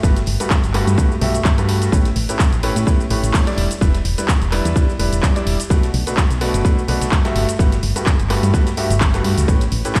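This uplifting, joyful piano house clip at 127 BPM opens with everything at once: a clear, intimate baby grand riff with audible action noise, tape echo and sidechain pumping moves through Gmaj9, A9, Em7 and Bm7 over a round, dark FM bass that pumps in the same way and drops out at 9.8 seconds. A punchy, overdriven electronic kick sits up front, joined by a layered, overdriven house kit of handclaps, hi-hat and shaker, while a very quiet acoustic jazz kit adds smooth dark cymbals, ride, hi-hat and a high-tuned snare. The 16th-note swing gives the groove a light bounce, and the whole clip sounds as if played through a big sound system in a bare stone room.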